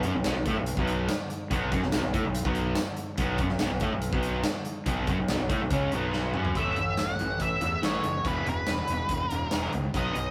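An up-front octave-fuzz lead guitar, dark and distorted, breaks in at 6.6 seconds with a picked melody over a sunny, swaggering classic rock riff at 142 BPM in straight 4/4. Beneath it, a raw, double-tracked garage guitar with lo-fi overdrive drives the riff alongside a growly fuzz fingered electric bass, while a big-room acoustic drum kit with punchy kick, snare, hi-hat, toms and tambourine pushes forward and plays a fill at 6.1 seconds. The chords move from B5 to A and then E5, captured with light reverb in a rough rehearsal-room sound, in this excerpt cut from a longer piece.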